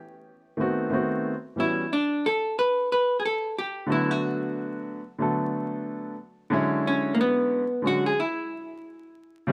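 Hip hop with a mellow, smoky mood and a swung 16th-note feel in 4/4, this excerpt opens with a polished, up-front grand piano at 0.6 s playing accompaniment through chords such as Em69, D6 and E13. At 1.6 s a vintage hollow-body electric jazz guitar takes the melody, its clean, picked tone dark and close, with plate reverb on both instruments. Vinyl crackle and a small room's ambience give the whole a dusty, intimate air.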